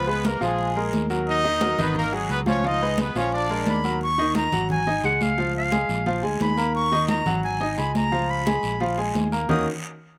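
A punchy, bright horn section opens this passionate, danceable Eb minor salsa excerpt at 175 BPM, handing the melody at 3.7 seconds to an airy, reedy jazz flute with vibrato, chiff and slapback echo, over a clear baby grand piano with audible action noise, a warm fingered electric bass, high-tuned congas with hard hands and a raspy guiro, all in a dry, roomless outdoor sound.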